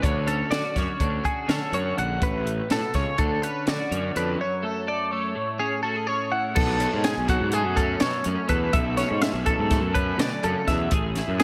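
Wistful yet playful, this short cut from a longer math rock and midwest emo piece moves at 248 BPM in eighths, counted in an odd 9/8 with a straight feel. Two bright, twangy twelve-string electric guitars carry the harmony, one playing chordal accompaniment coloured by analog chorus and slapback echo, the other spinning high arpeggios through tremolo and the same slapback. A growly, overdriven fuzz bass played with the fingers sits up front beneath them, while a compact cocktail drum kit keeps time on crash, hi-hat, tight kick and a high-tuned snare, its cymbals dark and its tone dry. The chords drift through Dmaj7, Aadd9, F#m and Amaj7 before the second section settles on a long Bm11 from 6.6 seconds, resolving back to Amaj7 near the close. A moderate, lush hall reverb gives the mix a big arena sound.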